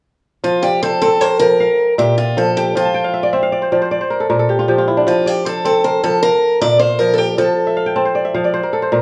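A lilting 12/8 pulse moves at 104 beats per minute in dotted quarters, with a straight feel, giving this joyful West African traditional passage an easy forward sway. Set in F major and tuned to A4 = 444 Hz, the harmony rocks between F5 and Bb5 chords throughout this short section of a longer piece. A fingerpicked kora spins ringing, mellow arpeggios across a broad range from Bb2 to A5, its crisp attack sitting up front, and it adds fills from 2.9 to 5.1 seconds and again from 7.7 seconds through the close at 9.0 seconds. Alongside it, a picked acoustic archtop guitar carries the melody in a compact register from F4 to D5, its boxy tone equally forward in the mix until it drops out at 7.9 seconds. The two players sound as if they are performing live together in one large studio room, wrapped in a moderate reverb that lends the whole a sunny, open glow.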